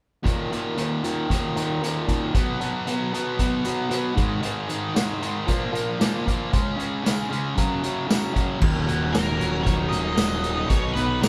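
Captured as a band playing live in one room with moderate large-studio reverb, this gritty, driving classic rock passage in Eb minor at 115 BPM, cut from a longer piece, rides on a bright, double-tracked distorted electric guitar riff and an up-front vintage drum kit with dark cymbals, punchy kick, snare, hi-hat and tambourine, backed by a very quiet, shimmering octave-doubled twelve-string acoustic guitar, before an overdriven picked electric bass joins at 8.6 s and a dark octave-fuzz lead guitar with wah enters at 9.1 s to carry the melody.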